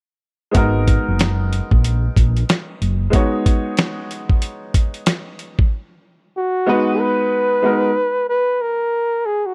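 This mellow, cool jazz-hop fragment, lifted from a longer piece, opens with a clear upright piano, a growly fretless electric bass and a dusty soul sampler-style drum kit all arriving together at 0.5 seconds over a minor-ninth chord. The drums sit up front with a gritty, compressed character, a thumpy kick, a medium-tuned snare and hi-hat, all carrying a swung sixteenth-note feel. The dark, round bass is amped and treated with an ensemble chorus, holding the low end until it drops out at 3.1 seconds for a break carried by the piano and drums. As the harmony settles onto a minor-seventh chord in the second section, a breathy flugelhorn enters at 6.4 seconds for a solo melody, its jazz-style phrasing marked by vibrato, scooped notes and a smooth top. The dry, close sound recalls a 1970s studio, with little reverb and every part placed near the listener.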